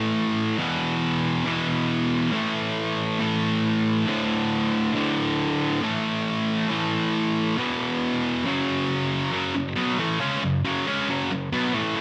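A high-gain distorted electric guitar, bright, picked and double-tracked, sits up front and plays alone through this heavy, epic metal excerpt at 137 BPM in 4/4, moving in half time for the first 9.3 seconds over power chords built on A, E, D and F#. At 9.3 seconds the passage shifts to a new section that runs to the cut at 12.0 seconds. Light reverb surrounds the guitar in a rough home-demo mix.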